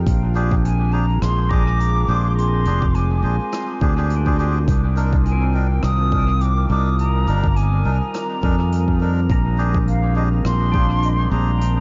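A deep, tape-warm electronic kick and a brushed jazz kit, heard as hi-hat and rim click in the background with dub echo, set a 104 BPM groove in 4/4 with a gentle 16th-note swing. This meditative, deep slice of ambient dub, cut from a longer piece, rests on a growly, punchy fingered electric bass placed up front. A warbling, nostalgic pad of detuned sawtooth and triangle tones holds sustained chords with chorus and its own reverb, moving from Bb13 to Cm9 at 4.7 seconds and back to Bb13 at 9.3 seconds. Behind it, a clean, twangy pedal steel guitar played with fingerpicks spins arpeggios through lush chorus and diffuse ambient delay, while a reedy, nasal melodica, close-miked and dry, drops stabs that ring out in dub echo. Entering at 0.6 seconds, a hollow concert flute carries the melody with tongued notes and vibrato, its pure tone trailing into diffuse delay, and the whole mix sits in light reverb with a soft, rounded top end.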